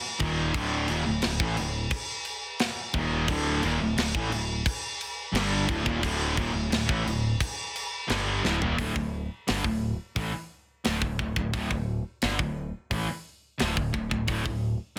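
A relentless, aggressive heavy metal excerpt at 87 BPM opens on a D5 power chord, with two bright, compressed distorted electric guitars and a double-tracked fuzz guitar churning riffs behind an up-front, tight studio drum kit with bright cymbals and a clipped kick, while a growling overdriven picked bass digs low, all in a dry, dense, heavily limited mix where a drum fill at 8.4 seconds marks the fuzz guitar's exit and a new section from 8.8 seconds.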